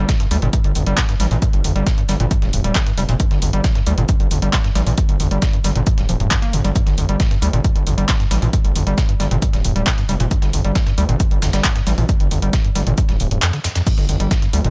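Driving peak-time techno with an industrial, intense mood, this short section cut from a longer piece rides a straight 4/4 pulse. An up-front, layered electronic kick drum hits hard beneath a distorted, aggressive synth bass that growls low with square, sawtooth and sync-edged tones, pumping against the kick through sidechain compression. Above it, a squelchy, saturated acid bass riff carries resonant filter plucks with subtle chorus and tape echo, and a filter sweep runs across it from start to finish. A tape-warm analog drum machine adds handclaps, hi-hats and crash cymbal, its hats and cymbals also pumping with sidechain compression. Further back, a compressed sampler-style kit contributes high-passed hi-hat, shaker and a fat snare. The mix is dry and gritty, with a raw hardware character and little reverb.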